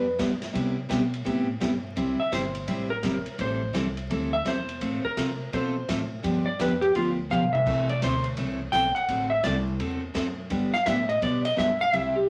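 This down-home, playful western swing clip opens at once on a clean, dark lap steel guitar carrying the melody up front, its slide lines sitting over a bright, full-bodied picked steel-string acoustic guitar that is also placed close. At 169 BPM in 4/4 with an eighth-note swing in C major, an upright bass gives woody, thumpy pizzicato support from its gut strings. A swinging big-band drum kit joins at 0.2 seconds, airy and polished, with dark cymbals, a medium-tuned snare and a punchy kick, and it drops in a short fill at 7.3 seconds. The harmony moves through easygoing changes such as Cmaj7, Am7, Fmaj7/A and G7 before settling back on G. A small, wet room reverb and a layer of vinyl crackle give the track a dusty, old-record feel, and the piece is cut from a longer performance.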